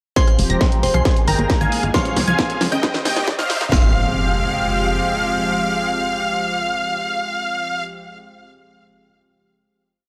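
A distorted four-on-the-floor kick and cracking snare drive this soaring, euphoric uplifting trance piece at 135 BPM in F minor, with a second electronic kit adding hats, rim clicks and a backbeat in a large-room sound through a build-up with a drum fill and filter sweeps. A tight, nasal sequencer bass gallops in sixteenths under a very quiet arpeggiated synth loop drifting against the bar, while a lush, warbling vintage pad holds chords moving from Fmadd9 through Absus2, Db and Cm/Eb. Up front, a huge, thick supersaw riff in thirds and sixths pumps against the kick, joined by a glassy FM bell line in octaves and a background pluck doubling the anthem an octave higher, as a riser from 1.7 seconds carries everything into the final Fmadd9 chord at 3.7 seconds.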